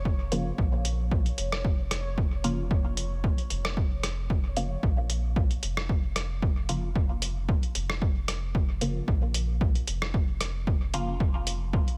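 A dry, deep and cavernous dub techno excerpt in Bb minor at 113 BPM with a light 16th-note swing, built on a round, soft sub bass and an overdriven, punchy electronic kick, with a muffled, pitched-down sampler-style kit of hi-hat and rim click carrying dub echo, muted detuned chord stabs through phaser and echo, and a bubbling, resonant stepped-filter texture that sits in the background under chorus until 4.8 seconds.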